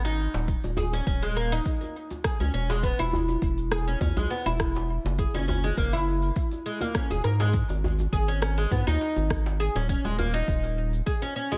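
The sound is dry, with little reverb, and the oud and bass sit up front in this short section of an organic downtempo track. The mood is mystical and meditative, moving at 102 BPM in 4/4 with a light 16th-note swing and tuning set slightly above standard pitch. A woody, plectrum-plucked fretless oud with doubled strings plays arpeggios through a tape echo. Beneath it, a round analog bass blending square and sine tones, dark and sustained with a fast attack, carries a sidechain pump until it stops at 11.0 seconds. The deep house drum kit adds smooth hats, cabasa and rim clicks, a medium-tuned acoustic djembe brings vintage, band-limited metal rattles, and a deep, layered electronic kick enters at 0.5 seconds. The harmony moves from D#5 through a rootless C#m7/E, F#7 and G#5 before returning to D#5.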